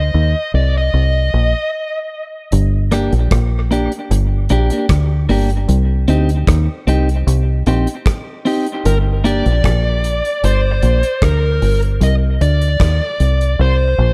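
Dub reggae with a meditative, hypnotic pull, opening on a filter-swept break where a dark, overdriven lead guitar and a round, foam-muted fingered bass sit up front, before a dry, tight-kicked 70s drum kit enters at 2.5 seconds with hi-hat and rim click, a clean, compressed electric guitar adds filtered, echoing accompaniment, and the lead returns at 8.9 seconds, drenched in dub echo within an echo-heavy mix, until the drums fall away at 13.6 seconds.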